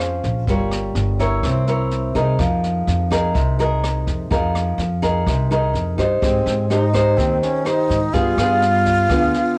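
A straight 4/4 bossa nova groove at 125 BPM in F minor opens this short, intimate and wistful fragment cut from a longer piece, with the nylon-string guitar, upright bass and jazz brush drum kit all sounding from the start. The fingerpicked guitar sits up front with a bright, classical tone and audible finger squeak, moving through Gm7b5, C7b9 and Fm11 in the opening bars. Beneath it, the pizzicato upright bass gives a woody, thumpy low end on steel strings, while the brushed kit adds rim clicks, a medium-tuned snare and a boomy kick in a natural small-room sound, carrying a cassette-tape character. At 6.2 seconds a breathy alto flute enters up front as a second line, its crisp attack, lifted highs and somewhat unsteady vibrato floating over a shift to Abmaj7 and then G7b9. Light reverb and the home cassette recording lend the whole fragment a close, unpolished feel.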